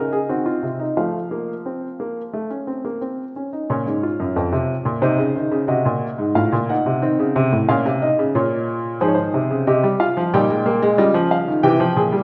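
Contemplative and serious, this short cut from a longer baroque-style four-part fugue in Bb minor at 90 BPM in 4/4 features a solo baby grand piano, up front with a worn, short-sustained tone, set in the wet reverb of a church or concert hall whose muted highs lend the recording a dark cast, as the harmony settles onto Bb minor at 3.7 seconds and closes on a C chord.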